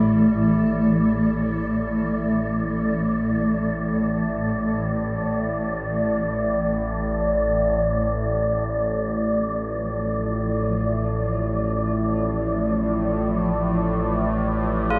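Unfolding in free time, this dark ambient drone feels ominous and vast, a 15-second stretch cut from a longer piece. An analog drone sits up front in the low register, its sawtooth and pulse-wave tones evolving under pulse-width modulation, chorus and phaser, and it fades in across the whole passage. Above it, a granular cloud pad holds sustained chords with a blurred, full-bodied body and its own built-in reverb, moving from an A5 chord to Dm/A at 8.6 seconds. A breathy, wind-like tuned noise texture hovers high on D5, also up front, with slow attacks and long releases. In the background, tubular bells struck with a rawhide hammer ring out solemn, metallic arpeggios through tape echo. The whole mix sits in a huge, wet reverberant space with an 8.2-second decay.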